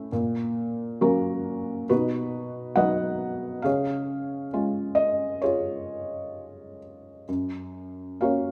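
A moderate scoring-stage reverb gives this short excerpt a gentle sense of space, while the piano itself sits up front and close. It is a lyrical classical piece for solo felt-muted upright piano, warm and calm in mood, moving in a flexible rubato over a four-beat metre. The instrument sounds soft and intimate, with a short sustain and the natural clatter of its action audible beneath the notes. The playing spans from low F#2 up to F#5, and the harmony moves from F#/A# through B and C# before settling on F# around 7.3 seconds. The piano plays alone for the full 8.5 seconds.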